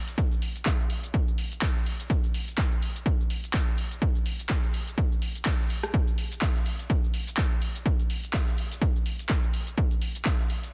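An overdriven analog drum machine opens at 0.1 s with handclaps, hi-hat, rim click and shaker pumping against the sidechain, joined at 0.2 s by a punchy, distorted electronic kick, both up front with a large-room character, in this brief, sensual and nostalgic house fragment at 125 BPM with a 56% swing on the 16ths, dry and sealed in a dense, heavily limited modern master.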